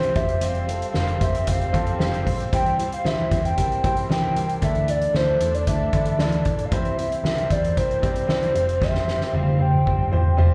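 Earnest and dramatic, this piano-driven pop piece at 114 BPM in 4/4 is cut from a longer piece and heard as a live gig through a venue's PA with club ambience: a hollow, clarinet-like synth lead with chorus, vibrato and slapback echo carries the melody over a dark, woody upright piano and a fingerpicked steel-string acoustic guitar riff, both echoed and set back in the mix, while a bowed studio string section holds soft sul tasto chords behind a round, foam-muted picked electric bass and an up-front soft-mallet drum kit with a boomy kick and fat snare that plays a fill from 8.8 seconds, all moving through Fsus2, C and Dsus2.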